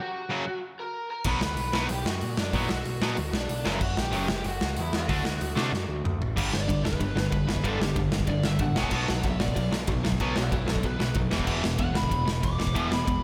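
Urgent and raw, this punk rock excerpt opens with a lo-fi lead guitar through a small cranked amp, its overdriven tone carrying a slapback echo, before two bright, picked distorted rhythm guitars set up their riff from the background at 0.3 seconds. A big rock drum kit with a punchy kick and bright cymbals sits up front from 1.2 seconds, joined by a growling, round overdriven bass, and a drum fill at 5.7 seconds launches the lead guitar into a solo from 6.4 seconds to the cut. A lush hall reverb gives the whole band a big arena sound.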